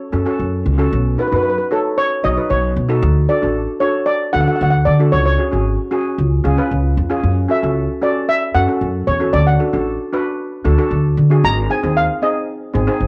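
A cassette-taped home recording in a small room with light reverb captures a bittersweet, brooding calypso excerpt, where a mellow, shimmering lead steel pan played with soft rubber sticks carries the melody up front over darker cello pans struck with hard rubber sticks, while a woody, thumpy pizzicato upright bass on gut strings anchors the minor-key progression from 0.1 seconds.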